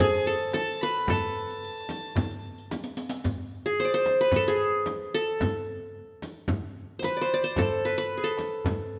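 A moderate recital hall reverb surrounds this short passage cut from a longer piece of Arabic maqam ensemble music, hypnotic and soulful in a straight four-beat metre. Up front, a plectrum-plucked qanun carries the melody throughout, its triple strings giving it a bright edge. A single warm violin with a nasal, reedy gut-string tone and airy bow plays a close second line above it, stopping at 2.7 seconds. Underneath, a deep clay-shell darbuka sits in the background while a frame drum struck with hard hands and a riq with dark jingles keep a close, dry pulse. A drum fill from 2.7 to 3.3 seconds leads into a new section, where the percussion continues until 8.8 seconds and the qanun plays on to the end.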